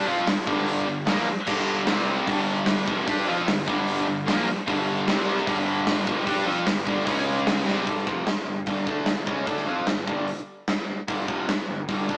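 A gated 80s drum kit sits up front in this anthemic, energetic hard rock excerpt, entering at 0.3 seconds with a tight kick, medium-tuned snare and bright cymbals, and playing a fill at 7.7 seconds. Behind it, two overdriven semi-hollow guitars with a hollow-body bite and a scooped, double-tracked high-gain guitar play a riff over G5, C5 and C#5 power chords, with the high-gain guitar dropping out at 7.9 seconds, while a growly fuzz bass holds the low end. The sound is rough and rehearsal-room raw, with tube saturation, a small-speaker character and a wet stone-room reverb.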